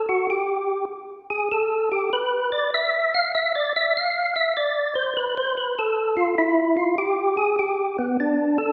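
A swinging 4/4 groove at 99 BPM, with a strong lilt on the eighth notes, drives this soulful jazz excerpt. A percussive tonewheel organ plays alone for the full 8.7 seconds, sitting up front with a fat, clean tone marked by third-harmonic percussion, key click, chorus vibrato and a slow rotary speaker, moving between B3 and F5. The playing is bathed in the wet reverb of a recital hall, giving it the resonance of a church or concert space.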